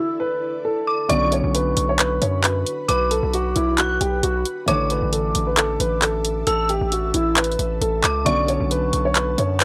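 A dry, gritty recording with light reverb opens this dark, brooding trap excerpt at 134 BPM in a half-time feel, where a mellow, intimate grand piano carries the melody in B minor, with audible action noise, over a felt-muted upright piano's soft accompaniment, an eerie, inharmonic FM bell line treated with chorus, tremolo and analog delay, and an ethereal pad sustaining chords in the background. At 1.1 seconds a saturated, aggressive 808-style bass and an up-front electronic drum kit with bright hats and handclaps enter. The harmony moves between Asus4 and Bmadd9.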